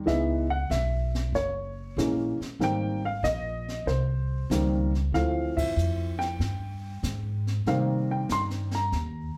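A swung 4/4 groove carries this late-night, moody jazz piano trio excerpt, with a brushed drum kit, its high-tuned snare, boomy kick, hi-hat and ride sitting further back beneath the other two players. Up front, an intimate baby grand piano with audible action noise and short sustain carries the melody over chords such as Dbm7, Gb9, Abmaj9 and Dm9, while a woody pizzicato upright bass holds the low end. The whole trio hits an accent at 5.5 seconds, and a wet club reverb places the band further back in the room.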